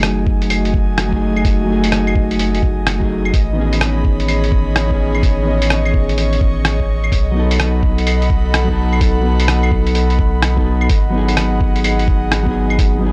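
A mellow, dark electric guitar played clean and fingered accompanies this wistful, nocturnal future garage excerpt, its tape echo and sidechain pumping breathing against an airy, breathy pad with chorus and a round dub sub bass in F# dorian at 127 BPM, swung at 64% on the sixteenths. A pitched-down, tape-toned sampler kit of claves, hi-hat and rim click plays from the start, joined at 0.3 seconds by a muffled, thumpy kick, both re-recorded in a small room, while a very quiet reversed, granular texture glows faintly from 1.1 seconds. Chords move from F#m69 through Amaj9#11 and B7 to G#m7 in a dry, gritty hardware recording with transformer saturation and digital ambience.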